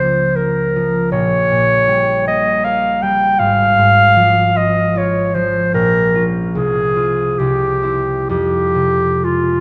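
Serene and warm, this short romantic classical duo in a rubato 3/4 sets a clear, up-front solo clarinet melody over a bright, ringing fingerpicked concert harp accompaniment, both playing throughout the 9.6 seconds and bathed in a wet concert-hall reverb as the harmony settles onto F minor at 8.3 seconds.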